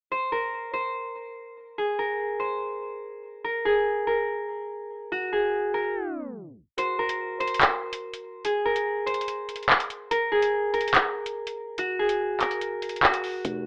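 Drill hip hop at 144 BPM in a half-time feel, ominous and cold, opens with a ringing, fingerpicked concert harp melody up front, then a tape stop at 5.9 s gives way to a drill kit of metallic, tape-tinged hi-hats and handclaps from 6.8 s, before a heavy, aggressive distorted 808-style bass with a noise layer hits at 13.4 s, all in a rough home-demo mix with light reverb and an AM-radio tone, cut from a longer piece.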